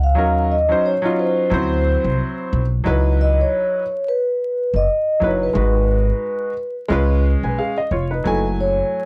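Mellow and nocturnal, this jazz-hop cut from a longer piece swings in 4/4. A ringing, metallic vibraphone played with soft mallets and a slow motor vibrato carries the melody, taking a solo through the first 2.9 seconds. A woody, thumpy pizzicato upright bass with tube saturation and an intimate concert grand piano, with audible action noise and deep lows, sit up front through lush chords like D13 and C#m11, all captured in a dry, gritty recording dusted with vinyl crackle.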